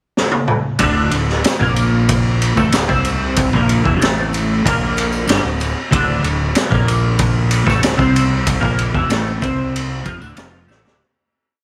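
A trippy, dark psychedelic rock piece opens with a gritty, saturated garage drum fill at 0.2 seconds, then settles into a riff on a bright, twangy twelve-string electric guitar through a rotary speaker, doubled by a fuzzy, overdriven fingered bass and dusted with a very quiet, jingly tambourine, all in a small room before a final drum fill as it fades out from 8.5 seconds.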